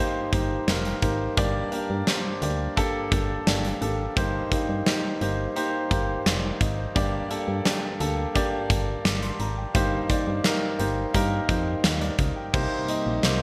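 1980s-style pop at 86 BPM in 4/4, this short excerpt from a longer piece feels dramatic and urgent. An intimate concert grand piano opens the track and carries the accompaniment from G2 to D6, up front with long sustain and audible action noise. From 0.3 seconds a round, punchy FM bass holds the low end between F1 and G2, joined by a huge arena drum kit with a punchy kick, a medium-tuned snare, hi-hat and crash cymbal, its gated reverb and rolled-off top giving a big-room weight. The harmony moves between Eb6/G and Gm before settling on Cm7 at 12.5 seconds, where a detuned sawtooth pad with chorus and a resonant filter swell enters in the background. A moderate plate reverb and bright digital production give the whole a 1980s sheen.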